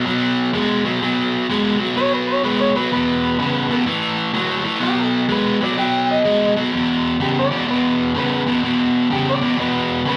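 Vinyl crackle and a wet studio reverb frame this gritty, soulful blues cut from a longer piece, which moves with a swung feel. Up front, an overdriven electric guitar picks a low riff throughout, while a slightly broken-up electric guitar through a small old amp carries the melody higher up, soloing until 6.7 seconds. At that point the music shifts into a new section that runs to the end at 10.2 seconds.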